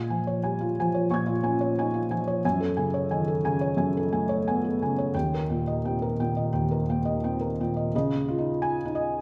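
A felt-muted upright piano plays alone from the first moment, its soft, mellow tone sitting up front with audible action noise, in a tender, intimate neoclassical minimalist piece that moves with a gentle rubato in 4/4. The harmony drifts from Bbm7 through Gbmadd9 to Eb, then shifts to Dbadd9 at 7.9 s as a new passage begins, across a span from Eb2 to Ab6. A church-like recital hall reverb surrounds the piano in this brief excerpt, tuned slightly low at A4 = 439 Hz.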